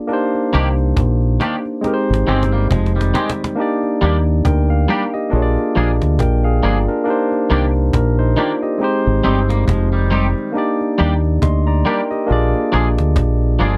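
Lovers rock reggae in Eb major at a relaxed 69 BPM, with a swung sixteenth-note feel and a sweet, romantic mood, cut from a longer piece. A bright, barky tine electric piano carries the accompaniment through a combo amp, while a snappy cajon played with hard hands and snares keeps the beat and adds a fill between 1.8 and 3.6 seconds. A deep dub fingered bass sits loudest in the mix, dark, round and punchy, while a clean, compressed, twangy guitar plays stabs colored by analog chorus. A second twangy guitar, scooped and softer, adds brief arpeggios at 2.3 and again at 9.2 seconds. The chords cycle through Cm9, Abmaj7, Ebmaj7 and Bb7 twice, and the dry, close 1970s-style studio sound keeps the whole recording intimate.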